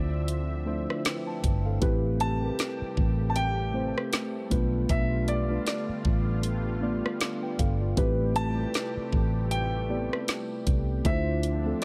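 A swung sixteenth-note groove in 4/4 drives this moody, sensual contemporary R&B passage, cut from a longer piece, with a produced electronic drum kit entering at 0.3 seconds, its knocking kick, woody snare, rim click and warm hi-hats sitting up front with a tape-saturated tint. Beneath it, a vintage fingered electric bass plays a dark, round, foam-muted line in its low register, also prominent in the mix. Muted, felt-like synth keys with a fast, decaying attack and a faint noise layer carry the accompaniment, thickened by chorus, while a lush, detuned unison pad holds sustained chords with a slow attack and long release, its warbling vintage character given chorus and a sidechain pumping motion. Over the top, a baby grand piano plays a melody in its upper-middle range, intimate and natural with audible action noise and a short sustain, trailed by tape echo. The harmony moves through Dm9, Am9, Bm7b5 and back to Am9 before returning to Dm9 at 11.0 seconds, all wrapped in a digital ambience.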